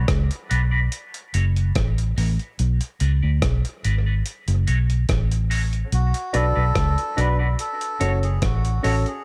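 Dub reggae at 72 BPM in B dorian, hypnotic and meditative, built on a round, foam-muted electric bass and a gritty, compressed sampler-style drum kit with a thumpy kick, hi-hat and rim click, both up front, moving between Bm and F#m. A twangy clean electric guitar plays accompaniment and a woody, mellow upright piano adds stabs, both through high-pass filtering and dub echo, while a reedy, breathy melodica carries the melody from 5.9 seconds, also soaked in dub echo. The sound sits in a digital ambience, and the track is cut from a longer piece.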